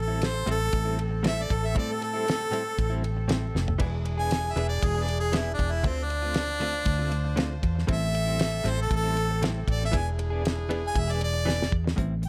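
Lightly reverberant, this brooding, mournful straight-eighth soul blues excerpt puts a bright, close-miked harmonica up front, soloing with light vibrato through slapback echo and plate reverb. Beneath it, a round, foam-muted fingered electric bass and a dry 70s drum kit with a fat snare and tight kick drive the groove, the drums adding fills at 3.5 seconds and from 11.5 seconds. A clean, compressed, direct-recorded electric guitar plays stabs with tremolo, while a tight horn section holds clear sustained chords in the background.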